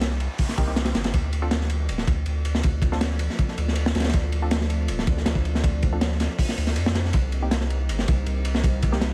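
A crunchy breakbeat kit and a saturated sub bass open this 160 BPM drum and bass cut straight away, with a faint electronic noise sweep passing in the background from 0.1 to 1.1 seconds. The acoustic kit sits up front with a punchy kick, a medium-tuned snare and dark cymbals across hi-hat and ride, its gritty, rolled-off sound giving the jungle groove a raw, nostalgic edge. Beneath it the deep sine sub holds thick, sustained notes low in D phrygian. A very quiet filtered dub stab, muted and mellow with a short plucked decay and chorus, enters at 0.6 seconds, and a lush unison pad of detuned sawtooth and square waves fades in with a slow attack at 1.1 seconds, warbling with chorus behind the beat. The harmony moves from Cm7 to Dm7 and returns to Cm7 near the end, all wrapped in small room ambience and a layer of vinyl crackle in this fragment of a longer piece.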